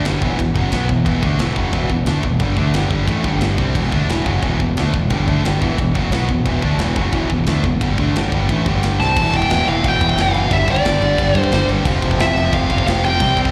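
Dark and epic, this short heavy metal clip, heard live through a venue's PA in a reverberant hall, drives a pair of bright high-gain guitar riffs, one set back in the background and one carrying a slapback echo, over an up-front, growling, punchy fingered bass and a tight, gritty acoustic drum kit with bright cymbals, until a drum fill at 9.0 seconds ushers in a shadowy, echoing lead guitar melody as the harmony darkens into a phrygian colour.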